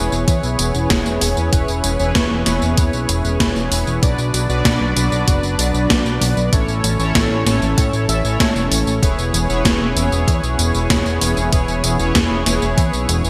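An up-front, fat analog bass with a saturated, wave-folded sawtooth tone and sidechain pumping anchors this nostalgic, moody synthwave excerpt, joined by mellow, round synth brass stabs with chorus and digital delay, a silky string pad with ensemble chorus and vibrato, an overdriven gated 80s digital drum machine with gated-reverb snare, hi-hat and tambourine, and a thumpy electronic kick entering at 0.3 seconds, all moving through E6, Bm and A in a bright 1980s-style digital production bathed in lush hall reverb.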